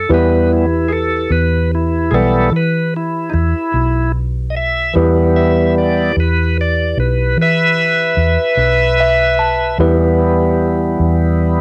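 A slow blues in 12/8 at 50 BPM counted in dotted quarters, this short cut from a longer piece moves with a straight, heavy-lidded feel and a soulful, brooding mood that sits on an E minor chord. Up front, the bright tonewheel organ takes the solo through all 11.6 seconds, its reedy, clean voice carrying a touch of key click and turning through a slow rotary speaker. Beneath it, a vintage muted fingered electric bass holds the low end with a dark, round, punchy, foam-muted tone that also sits close to the listener. A worn, slightly out-of-tune tine electric piano plays accompaniment from behind, sounding as if heard through its built-in speakers, and steps forward with a brief fill from 8.6 to 9.8 seconds. Light reverb and the soft grain of a home cassette recording give the whole a lived-in, intimate character.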